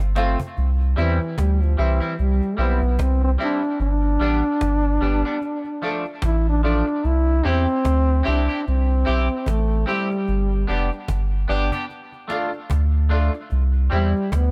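A solo trombone carries the melody up front, its tone punchy with a smooth top and a touch of vibrato, trailed by tape echo as it enters at 1.0 seconds. This is a laid-back roots reggae excerpt in C major at 74 BPM in 4/4, with a gentle swing on the sixteenths. A deep, round sub bass sits prominently beneath it, its sine-like notes landing with a fast attack and sustaining. A cajon opens with a short fill in the first 0.6 seconds, then keeps a woody, close and dry pulse from soft hands with faint snares. A clean, bright picked electric guitar adds accompaniment through lush chorus and tape echo, while a slightly detuned vintage upright piano places warm, smooth stabs in the background. The harmony moves through F, C, G and Dm, and the recording stays dry, with little room sound.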